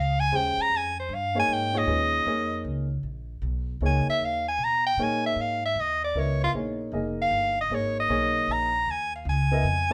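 A lilting 3/4 swing at 154 BPM carries this hypnotic, cool modal jazz excerpt, where a breathy, clear soprano saxophone solos up front with light vibrato over woody, growly pizzicato upright bass and an intimate baby grand piano with audible action noise that enters at 0.3 seconds, the band sharing one room under moderate reverb as the harmony moves from Bbm9 to Eb9sus4 at 1.9 seconds.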